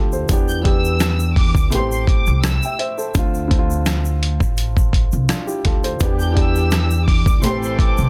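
A dense, heavily limited small-room mix frames this gritty, reflective boom-bap hip-hop excerpt, where a thumpy, compressed sampler-style drum kit sits up front beside a woody pizzicato upright bass, a dark, mellow grand piano with audible action noise and cassette-tape colour, a grainy egg shaker, and a lush, distant bowed violin section carrying the high melody with vibrato, while a present pop-style horn section adds delayed stabs from 6.0 s.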